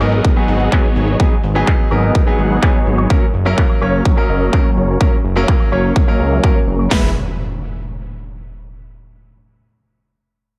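A straight 4/4 pulse at 126 BPM drives this triumphant, uplifting festival progressive house excerpt in E lydian, where a punchy up-front kick, snare and crisp hats sit over a background layer of metallic hats, cabasa, handclaps and woodblock under a filter sweep, while a fat analog bass, a clear concert grand piano with dub echo and a huge, euphoric detuned supersaw riff with phaser and its own filter sweep all pump with the sidechain across G#m7 and F#, before an up-front impact lands on E at 7.1 seconds.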